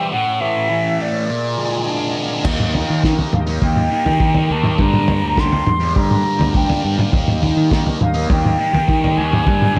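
Light reverb and studio ambience frame this dark, hypnotic psychedelic rock excerpt at 103 BPM in 4/4: an airy, mellow silver concert flute with vibrato and analog delay carries the melody over a thick, double-tracked fuzz guitar riff with phaser, while a shouting tonewheel organ with key click, overdrive and slow rotary speaker holds chords in the background, and from 2.4 seconds a growling, overdriven fingered bass and a muffled, cloth-damped drum kit with a fat snare and dark cymbals join in as the harmony moves from A and Bb7 to Eb and Gm.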